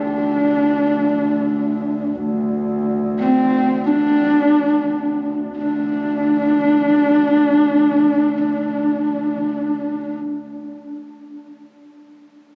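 Captured on a phone in the room, this brief cut from a longer Mongolian folk piece sits in a huge, club-like reverb with compression, giving it a windswept, solemn air in free time. Up front, a husky, woody horsehead fiddle carries the melody between C4 and D4 with vibrato and portamento, slowing down over the first 5.6 seconds. Beneath it, a bowed double bass with a soft attack holds a smooth, intimate D2 drone until about 10.3 seconds.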